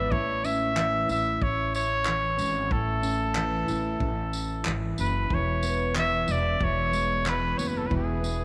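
A clear, up-front trumpet carries the melody in this short excerpt of heartfelt, easy-going acoustic pop, its vintage pop-style solo line marked by scooped notes. Beneath it, a fingerpicked jumbo steel-string acoustic guitar supplies dark, full-bodied accompaniment, while a pizzicato upright bass with gut strings adds a woody, thumpy low end. A natural country drum kit joins at 0.1 s, recorded in a studio room, with a punchy kick, handclaps and tambourine sitting lower in the balance. The harmony rests on Amaj7 before moving to E at 5.3 s, all in a straight, unhurried 4/4. A moderate plate reverb with a long tail gives the recording a soft sheen around the parts.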